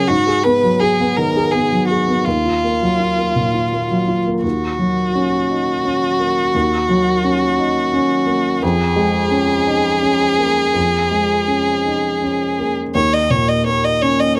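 Neoclassical piano and strings in Eb minor, this fragment from a longer piece moves in a slow, rubato 6/8 at around 54-58 BPM counted in dotted quarters, tuned slightly low to A4 = 437 Hz. A lone bowed violin carries the melody from start to finish, its clear, smooth tone shaded by vibrato and held even across its range. Beneath it, an upright piano accompanies throughout with a woody, intimate sound that is slightly detuned, and the noise of its action is audible. The harmony drifts from Abm7 through Ebmadd9 and Ebm7 to Bbm7/F, with a contrasting passage beginning at 4.4 seconds and the opening material returning at 13.0 seconds over an open Eb7 chord. Both instruments sit up front under close, detailed microphones with light reverb, giving the music a longing, fragile air.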